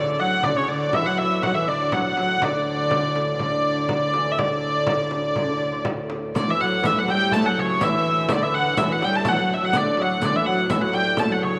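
A straight 2/4 pulse at 123 BPM drives this festive, ancient-sounding medieval dance in D major, and the tempo gathers speed across its 11.6 seconds. Up front, a nasal, reedy hurdy-gurdy carries the melody, its wheel-bowed tone smooth at the top. Beneath it, a dark, woody viola da gamba with light vibrato and a delicate, fingerpicked lute with double strings share a lower second line. A mellow, breathing pedal harmonium holds a drone in the background. A small, bright frame drum played with hard hands enters at 0.4 seconds, and a distant riq adds its jingles from 6.4 seconds as the second section begins. A wet plate reverb with a 3.6-second decay gives this fragment of a longer piece a spacious, resonant setting.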